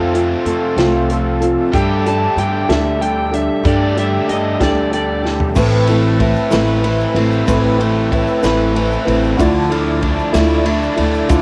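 A picked steel-string acoustic guitar opens this wistful, reflective folk rock and heartland rock excerpt, sitting up front with a boxy parlour tone, fresh strings and audible finger squeak over a slow 6/8 pulse at 63 BPM in A minor. Beneath it, a woody pizzicato upright bass, a double-tracked overdriven electric guitar playing a bright riff, and a reedy musette accordion holding shimmering chords in the background all start together, while an airy, polished country drum kit with a punchy kick and medium-tuned snare joins almost at once. An overdriven slide guitar adds a high, bright second line from 1.8 to 5.2 seconds over the Gsus2 chord. After a drum fill, the second half settles onto Amadd9 and Dmadd9, and a very quiet, slightly detuned upright piano enters at 5.5 seconds with a dark, worn, intimate sound and audible action noise, joined by a grainy egg shaker tucked close in the background. 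Most of the band carries the character of a home cassette recording, set in a moderate studio reverb.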